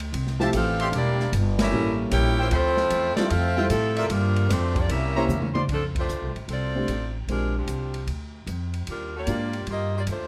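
An edgy saxophone section carries the melody up front, with light vibrato and a soft attack, in this energetic, brassy big band swing excerpt cut from a longer piece. A trumpet section with a smooth top plays stabs, while a bright, roomy trombone section adds a second line from the background; the trombones stop at 5.5 seconds and the trumpets just after. Underneath, a pizzicato upright bass sounds woody and up front, and a grand piano with deep bass accompanies through rich chords such as Fmaj9, A7b9 and Dm11. The drum kit has dark cymbals and a boomy kick in a small room, and it plays a fill from 5.3 seconds into a band accent as the second section begins. Light reverb gives the ensemble a touch of space.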